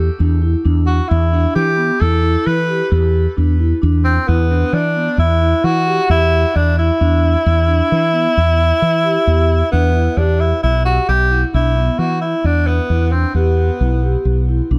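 Set in a straight 7/4 at 132 BPM, this brooding, intricate progressive instrumental in E minor rests on an Em7 chord, with a round, punchy fretless electric bass up front and a soft-mallet vibraphone ringing out mellow, metallic arpeggios through a digital delay in a boxy small-room sound. At 0.9 seconds a clear tenor saxophone takes the solo melody with vibrato, its distant, roomy tone also carrying digital delay, and the piece moves into a new section at 10.2 seconds. Light reverb surrounds this fragment of a longer work.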